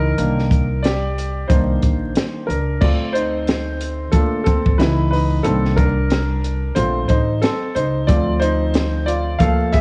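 Jazz-hop with a nocturnal, mellow feel at 91 BPM in 4/4, swung on the 16ths, this short cut from a longer piece sets a smooth, vintage grand piano up front taking a solo, moving through Cm7, Cm9, Dm7 and Bbmaj9 with long sustain. A woody, bright pizzicato upright bass on steel strings holds the low end, and a compact cocktail kit enters at 0.2 seconds with a punchy kick, high-tuned snare, hi-hat and dark crash cymbal, dry and up front. The sound is close and nearly reverb-free, coloured by worn, warbling old cassette tape, vinyl crackle, pitch drift and studio ambience.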